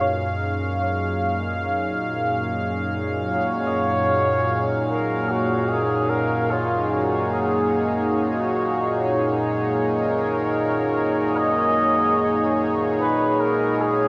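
A smooth, chorused analog pad holds sustained chords up front throughout this weightless, warm ambient excerpt at 74 BPM in F# major, joined by very quiet, round, detuned pluck arpeggios until 12.7 s, while from 3.3 s a distant flugelhorn sings a melody with light vibrato and diffuse delay over a reedy, breathing harmonium drone in the background, the whole recording set in a cavernous cathedral reverb with its highest frequencies rolled off.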